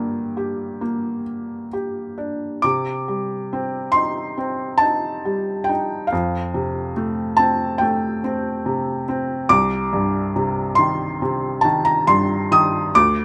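Classical solo piano in a dark, wistful mood, this lyrical 13.2-second fragment of a longer piece unfolds in rubato at about 70 BPM in 4/4, tuned to A4 = 441 Hz, as a felt-muted upright piano, intimate, mellow and up front with short sustain, ranges from C2 to Eb6 under light reverb, moving from Gm through Cmadd9 and Fadd9 to settle on Cm.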